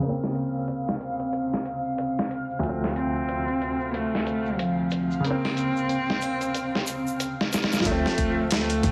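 A gritty, overdriven sampler-style drum kit with a thumpy kick sits up front in this cinematic, hypnotic trip hop excerpt at 92 BPM, its 16ths swung and its hats and snare filtered dull. A worn, slightly detuned upright piano with tremolo and tape echo, a deep analog pad carrying 12-bit sampler grit, a reversed granular swell, and a close, dry egg shaker and triangle all move between Bbmadd9 and Dm7 under a filter sweep. A distant, bowed cello with vibrato enters at 3.0 seconds, and a woody pizzicato upright bass arrives at 7.9 seconds, all through a heavily compressed, radio-like sound.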